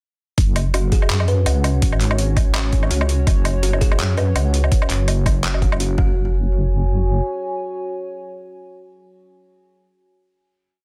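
Half-time drum and bass at 166 BPM in 4/4, this short, tense and cinematic piece opens straight into a drop at 0.4 s, with a swung half-time beat built from a gritty, overdriven sampler-style kit of closed hi-hat, handclap and low woodblock over a thumpy, pitched-down electronic kick. Up front sits a deep, soft wobble bass blending sawtooth and sine tones with chorus, playing modulated phrases whose wobble speed changes. A moody analog pad of detuned square, sawtooth and triangle waves with a sub octave holds sustained chords behind it, colored by chorus, phaser and sidechain pumping. Tucked in the background, a woody, plucked kalimba repeats a 16-step arpeggio sequence through tape echo. After the final hit at 6.2 s, the bass carries on until 7.2 s while the pad lingers until 9.3 s, all in a dry, dense and heavily limited modern master.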